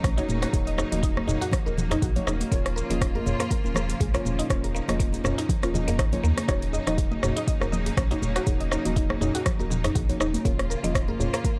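Afro house with a driving, spiritual mood, heard as a short cut from a longer piece in a steady 4/4 with a light swing on the sixteenths. An overdriven electronic kick sits at the front, layered and deep, while an afro-pop drum kit adds metallic hi-hats, rim clicks, shaker and toms. Congas with hard hands and a tight, cracking djembe with metal rattles sit close and dry in the background, and a round sine sub bass holds the low end with a sidechain pump. A woody, mallet-like FM pluck plays arpeggios through lush chorus and analog delay, joined from 0.2 s by deep, nasal chord stabs with a filter sweep, while a distant, bowed string section sustains vibrato chords, all moving between Ebm7 and Bbm/Eb. The dry, gritty sound carries a cassette-tape character with little reverb.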